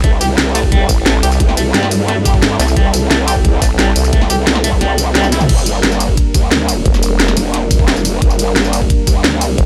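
This tense, aggressive dark technical drum and bass piece opens straight into a drop. A knocking, layered electronic kick and an up-front kit with a cracking snare and bright hats, re-recorded in a small room, drive beneath a growling, saturated growl bass and a nasal, resonant vowel-sweep wobble bass. A deep, detuned analog pad holds moody sustained chords with sidechain pumping, and a slightly broken-up, scooped electric guitar picks delayed arpeggios until 5.4 s. The kick drops out at 4.8 s as a drum fill leads into a second drop at 5.5 s, all in a dry mix.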